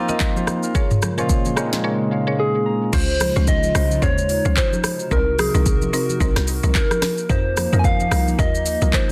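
A late-night, deep amapiano cut, opening on a bright, barky tine electric piano over a hollow, flute-like pad, woody mallet-like plucks with tape echo, an up-front electronic drum kit with deep kick, sharp snare and crisp hats, and ringing congas set in the background. The piano plays a fill from 1.8 seconds and stops at 3.0, as a gentle, keys-like synth lead with vibrato carries the melody. At 2.9 seconds the drop arrives with a bouncy, hollow log drum bass under a dense, heavily limited master and light digital reverb.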